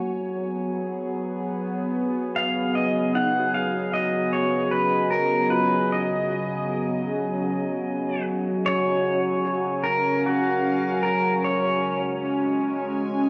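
A bright, twangy pedal steel guitar with tape echo carries the melody from 2.4 s in this weightless, serene ambient piece at 76 BPM in Db mixolydian, floating over an up-front, morphing wavetable pad with chorus and a filter sweep, very quiet round plucked arpeggios, and a pure glass harmonica texture that fades in, all steeped in a reverberant scoring stage and the warbly pitch drift and lossy artefacts of a worn cassette.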